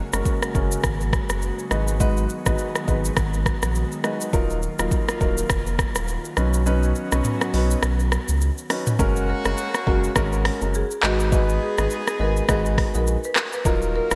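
An airy, breathy pad opens this sunny, breezy afrobeats excerpt, holding soft, detuned chords with chorus and a sidechain pumping that breathes against the beat at 103 BPM in 4/4, with a lilting swing on the sixteenths. Almost at once a grand piano, a thick, saturated sub bass and an up-front electronic afro-pop kit join it. The kit brings a deep kick, dark hi-hats, handclaps, rim clicks, shaker and toms, all set in gated reverb. The harmony moves through F#add9, G#m7, D#madd9 and Badd9, and the kick drops out shortly before the pad falls away at 9.0 seconds. At that point a tight pop-style horn section takes up a second line with vibrato, and moments later a woody rosewood marimba enters in the background carrying the melody, all framed by a bright 1980s-style digital sheen and light ambience.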